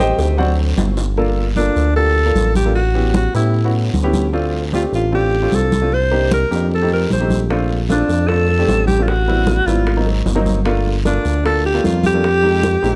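Fiery and sophisticated, this Afro-Cuban jazz excerpt in G minor moves at 152 BPM in a straight 4/4, opening with a clear, slightly worn concert grand piano solo over a brief drum fill. The alto saxophone enters at 1.6 seconds to carry the melody up front with jazz vibrato, over a smooth, mellow synth bass and the piano's deep-bassed, short-sustained chords moving through harmonies such as Gm9, Bbmaj9 and Ab9. Bright, thin-skinned congas sit in the background beside a raspy guiro, while tight, high-tuned bongos return very quietly at 7.5 seconds, all within a light reverb.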